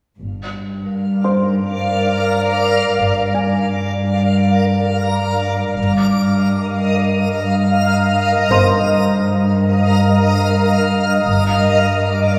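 Cinematic and uneasy, this short excerpt from a longer piece drifts in free time in G phrygian, moving from Gm7 to Bbsus4/G at 5.8 seconds and back to Gm7 at 11.3 seconds. A bowed cello section, soft and sul tasto with vibrato, sits up front on a low G, while a dark, woody double bass section holds G1 in the background. From 1.3 seconds a reversed, granular texture carries sustained chords up front with its own built-in reverb. Meanwhile a clear, worn baby grand piano with audible action noise, entering at 1.2 seconds, adds high notes behind, all heard from further back in a scoring-stage reverb.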